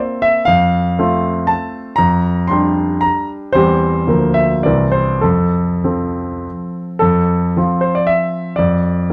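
Dotted rhythms in 3/4 drive this graceful, proud romantic classical dance, a brief cut from a longer piece in F major, where a solo concert grand piano, polished and up front with a deep bass and short sustain, moves with rubato between 97 and 126 BPM before settling back on F at 5.2 seconds, heard through light reverb in a dark production.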